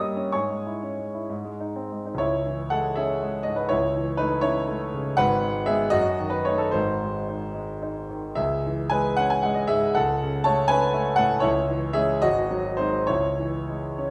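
Classical romantic character piece for solo piano, passionate and stormy, moving in 6/8 with free, elastic rubato. A single concert grand carries everything from 0.0 to 14.1 seconds, spanning G#1 up to E6, its tone clear and open, placed up front, with a deep bass anchoring the lower register. A brief opening phrase settles on a dominant G# harmony before a longer passage begins at 2.2 seconds, turning through C#m, A/C#, G#m7 and a D# diminished chord over F# before returning home. The closing bars press through F#m/C# and a G#7 to resolve on C#m. A wet recital-hall reverb with a 1.3-second decay surrounds the piano, and the music is cut from a longer piece.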